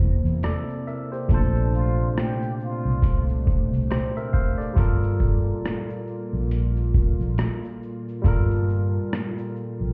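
Heard muffled through a wall with a club reverb, this nostalgic, reflective lo-fi hip hop excerpt moves at 69 BPM in G dorian, its 16ths swung over C7, Bbmaj9 and Gm9 chords. A gritty, pitched-down boom bap sampler kit with a thumpy kick, hi-hat, rim click and shaker sits up front beside a dark, round, foam-muted electric bass, while a bright, barky tine electric piano with cassette tape colour plays accompaniment over a smooth, detuned sawtooth pad in the background. From 1.3 to 3.2 seconds a distant, breathy plunger-muted trumpet offers a brief, intimate jazz-style solo with wah-wah, vibrato, scooped notes and analog delay.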